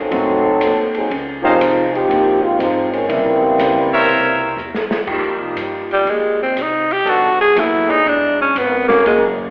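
A swung 4/4 at 121 BPM drives this dramatic, brassy big band jazz passage in F minor, cut from a longer piece. A cup-muted trombone section opens up front with a veiled, softly vibrating line, and brilliant trumpet stabs with a smooth top cut in from 1.4 seconds. Underneath, a concert grand piano with deep bass sits in the background, a woody pizzicato upright bass holds the low end, and an acoustic kit with dark cymbals and a boomy kick plays a fill at 4.6 seconds. The second half belongs to a raspy, growling tenor saxophone taking the melody up front from 5.9 seconds over clear, sustained trombone chords in the background. The harmony moves through lush altered chords such as Ab7b9 and C7b9 before settling on Fsus2, Bm7 and E9. Everything is bathed in a spacious scoring-stage reverb and heard from further back in the room, with a narrow, telephone-like tone.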